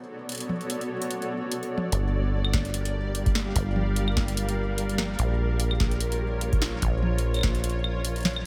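Eerie and cerebral, this swung IDM excerpt opens on a blurred, detuned granular cloud pad sustaining Bm7 and later Gm7 and Bbm chords, joined almost at once by a booming analog drum machine with crisp snare, metallic hats, claves and toms, before a rubbery, resonant, tube-saturated acid bass arrives at 1.9 seconds and a deep electronic kick drops in at 2.5 seconds, all set in a light reverb.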